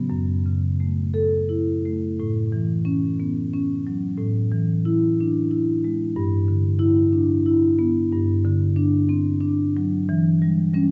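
Bathed in a long, wet recital-hall reverb with its highest frequencies trimmed away, this brief excerpt of a contemporary classical piece places a solo marimba played with soft mallets up front, its tone mellow, round and dark. The mood is hypnotic and reflective, unfolding in a flexible, rubato 6/8 through the instrument's lower and middle register. An opening F#m7 gives way at 2.2 seconds to a new passage that drifts through A69, E7/A, G6 and D7/G before settling on Em6 at 10.1 seconds.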